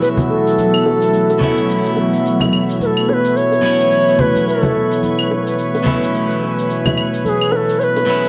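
A bright, airy cedar flute with a chiffy attack carries the melody through tape echo over a clean, compressed electric guitar with analog delay, a tense, string-like drone, a glassy texture of drifting overtones in the background, and tape-warm electronic cabasa and claves, while soft-handed congas and bongos join at 0.2 s, giving this peaceful, organic downtempo fragment a lightly swung, homemade cassette character in a moderate spring reverb.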